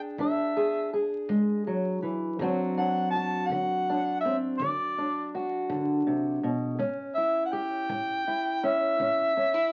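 Acoustic country blues in a swaggering, rollicking 12/8 with a straight feel, cut from a longer piece and heard as if from a very old 78 rpm record, crackle and all, with a dull top end and a moderate club reverb. A fingerpicked old ladder-braced acoustic guitar, woody and boxy with the dark tone of old strings, sits up front under a mellow harmonica that carries the melody with light vibrato, scooped notes and a jazz lilt, while a tight, natural kick drum played with brushes stays in the background. The chords move from E7 to D7 at 2.4 seconds and land on A7 at 6.8 seconds.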